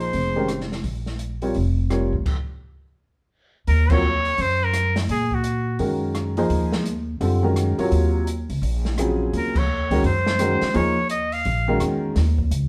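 A brief trumpet phrase opens this cool, hypnotic cut of modal jazz at 170 BPM, over a swinging quartet on a Bbsus2 chord: slightly detuned upright piano, thumpy gut-string upright bass played pizzicato, and a small-room drum kit with dark cymbals, hi-hat, rim click, snare and a boomy kick. After a band stop at 2.3 s, the group settles at 3.7 s into Eb dorian over Ebm11, punctuated by band accents. The clear, vintage-toned trumpet with vibrato returns at 3.7 s and again at 9.4 s, with the woody piano and bass up front, and all of it captured live in one room with moderate studio reverb.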